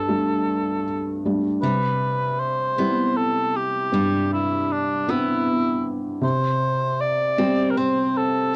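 A mellow cor anglais with light vibrato and a smooth top sings the melody up front over a soft, felt-muted upright piano at the very start of this intimate, nostalgic acoustic folk-pop ballad in C major, moving at a gentle 52 BPM in 6/8, before a dark, picked steel-string acoustic guitar with audible finger squeak adds arpeggios from 1.6 seconds, the chords passing from Gsus2 to Cmaj7 to Csus2, all captured as a home cassette recording with a light reverb in this short fragment of a longer piece.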